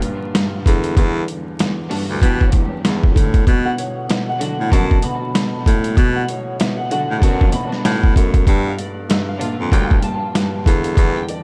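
A gritty, pitched-down sampler drum kit with a thumpy kick and high-tuned snare drives this reflective yet tough boom-bap hip-hop excerpt at 96 BPM in B minor alongside a dark, woody upright piano in accompaniment from the start. They are joined by a smooth-topped baritone saxophone carrying the bass from 0.7 s, very quiet bowed string stabs from 1.9 s, and a small, fingerpicked nylon-string guitar melody with chorus and delay from 3.6 s, all set against vinyl crackle and light studio reverb.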